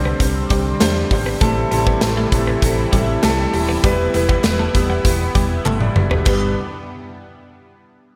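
A punchy big rock drum kit with gated reverb, bright cymbals and a fill from 5.7 to 6.3 seconds drives this nostalgic, uplifting 1980s-style pop excerpt in G major at 99 BPM, as an up-front concert grand piano with lush chorus, a thick detuned sawtooth pad with chorus and phaser, a round, dark hollow-body bass, a twangy twelve-string electric guitar riff with digital delay in the background, and very quiet, dry group handclaps from 0.8 seconds move through Csus2, Am7 and Em to G in a bright digital production.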